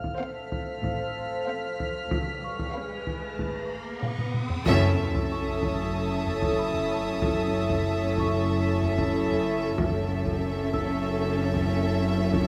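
Tense and uneasy, this cinematic suspense cue moves at 94 BPM in a straight 4/4, with cello and double bass sections bowing soft, pure sul tasto lines beneath heavy-stick taiko drums, a deep, moody ambient pad with chorus, and a faint, bell-like celesta. Violin sections layer a floating high texture, a close melody and a woody, lush second line over a dark, intimate viola accompaniment, while an electronic riser builds from 1.9 seconds into a drum fill. At 4.7 seconds the music settles into F# minor with an ensemble accent and impact as a distant, roomy French horn section enters on sustained chords, all in a moderate concert hall reverb.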